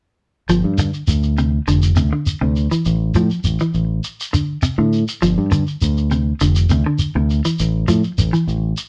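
A straight 4/4 afrobeat groove at 102 BPM drives this hypnotic fragment of a longer piece, with a grainy, close shekere, a round, dark fingered electric bass and a clean electric guitar playing arpeggios up front, moving between G7sus4 and A5 in the light reverb of a band playing live together in one room.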